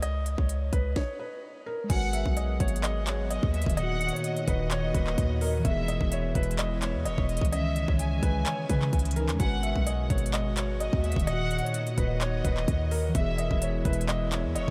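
A trap drum kit, up front, with a hard-clipped kick, sharp snare, crisp hats, handclaps and crash drives this brooding half-time hip hop excerpt at 128 BPM in G# minor, over a deep, boomy 808-style bass. A soft felt-muted upright piano melody with audible action noise and diffuse delay is joined at 1.8 seconds by a mellow tine electric piano in the background, then from 1.9 seconds by a dark, woody violin section played sul tasto and a smooth detuned analog pad with chorus. Everything is soaked in huge dreamy reverb, with a brief stop between 1.0 and 1.9 seconds.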